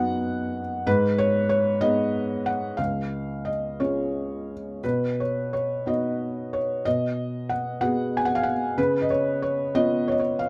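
Classical solo piano in a lyrical, calm vein, this brief passage is cut from a longer piece and moves in a gently rubato 6/8 at roughly 58-64 BPM, counted in dotted quarters. A felt-muted upright piano carries everything alone from 0.0 to 10.5 seconds, spanning C#2 to G#5, with a soft, mellow, intimate tone that sits up front. The instrument has a vintage character, and the mechanical noise of its action is audible. The harmony drifts from B/F# through G#m and C# to B, then moves to G#m7/B before reaching C#7 at 8.8 seconds. Light reverb surrounds the piano, and its tuning sits slightly low at A4 = 439 Hz, adding to the warm, close feel.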